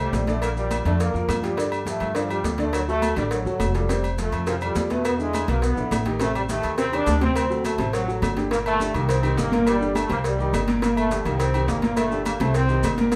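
A light reverb gives this fiery salsa fragment a touch of air, while a woody, thumpy upright bass sits up front at 208 BPM in G minor. A mellow trombone section carries the melody from the start, tight and punchy with a light vibrato, heard at a roomy distance. A boxy grand piano plays the accompaniment underneath, moving through Bb, D, F and E7 before Am7b5 and D7 lead into a new section at 8.5 seconds, where the harmony rocks between Gm and Cm. The percussion enters at 0.1 seconds: ringing, high-tuned congas and a round, low-tuned cowbell in the background, close and dry metal-shell timbales with agogo bells, and grainy, band-limited maracas with a vintage tinge. Cut from a longer piece, it feels danceable throughout, driven by the dark, gut-string pizzicato of the bass.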